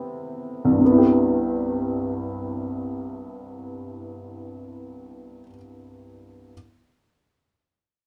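In a gently rubato three-beat lilt, this brief, peaceful fragment of lyrical classical solo piano opens on a Cmaj7 chord, with a worn, woody upright that sounds slightly detuned, sits up front in light reverb, and plays alone from 0.0 to 6.5 seconds.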